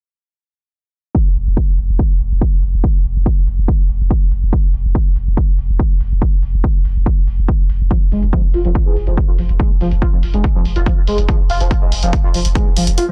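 Driving peak-time techno in F minor at 142 BPM, this intense, dark passage is cut from a longer piece and rides a straight 4/4 pulse tuned slightly low to A4 = 439 Hz. A heavy, layered electronic kick with overdrive sits up front from 1.1 seconds, joined almost at once by a deep, thick sub bass holding F1, its triangle tone saturated, low-pass filtered and pumping with sidechain compression. An analog, tape-warm electronic hi-hat ticks along underneath, also pumping with the sidechain. At 7.9 seconds a screaming, guitar-like synth lead arrives with a riff between F3 and F4, blending sawtooth and pulse waves with a moving notch, vibrato, tube saturation, ensemble chorus and digital delay. A filter sweep runs through the whole passage, and the dry, dense, heavily limited master keeps every part close and forceful.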